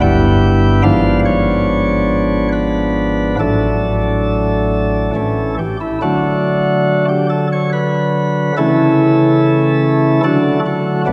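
A solo chamber organ opens this short classical fragment, its flute stops sparkling and light with a chiff, voiced up front across a span from G1 to G5. The chorale-style writing in triple metre moves with reverent, majestic poise, passing from Em/G through G#dim7 to a half cadence on A, then settling toward D at the close at 11.1 seconds. A wet church reverb with a 2.7-second decay surrounds the bright pipes with a spacious, resonant halo.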